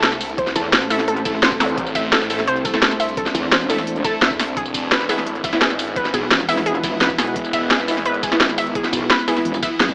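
A straight 4/4 groove of dark technical drum and bass, futuristic and mechanical, is driven by an up-front kit of cracking snare, crisp hats, ride, tambourine and toms with a knocking overdriven electronic kick behind it, while a swirling phased saw bass and a metallic, aggressive wobble bass (playing 0.6-4.0 s and 6.1-9.6 s) churn under a warbling, lo-fi arpeggiated pluck, bold orchestra-hit-like stabs, a deep moody pumping pad and a brief zap at 1.6 s, all over Am moving to E, with an AM-radio colour in a moderate plate reverb across this cut from a longer piece.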